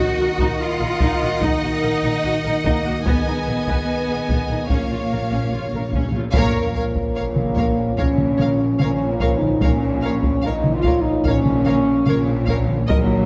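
A roomy scoring-stage sound frames this dark, dramatic cue from an epic orchestral film score, where two rich, bowed violin sections carry the melody and a second line over expressive violas, smooth close cellos and focused double basses in the background. Distant French horns and tight trombones hold sustained chords beneath. Hard-stick taiko drums join the articulate hard-mallet timpani at 0.4 seconds, and the timpani fill leads into a band accent at 6.3 seconds. A huge, very quiet sub drop sits under the impact until 9.6 seconds.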